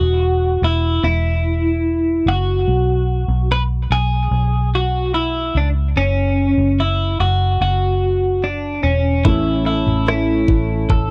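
This short pop ballad fragment opens with a bright, twangy twelve-string electric guitar carrying the melody up front, its clean, compressed picking trailed by tape echo, over a dark, round, foam-muted electric bass. The mood is hopeful and tender, moving at a slow 73 BPM in a straight 4/4 as the harmony passes from Esus2 through B5 and F#5. At 9.2 seconds the arrangement fills out. A baby grand piano adds accompaniment with natural, long-sustaining tone, and a fingerpicked steel-string acoustic guitar plays arpeggios in the background. A smooth, produced R&B drum kit enters at the same moment, with a knocking electronic kick, rim clicks and toms, just as the chord shifts to A. The sound is dry and close, like a 1970s studio session with little reverb around the instruments.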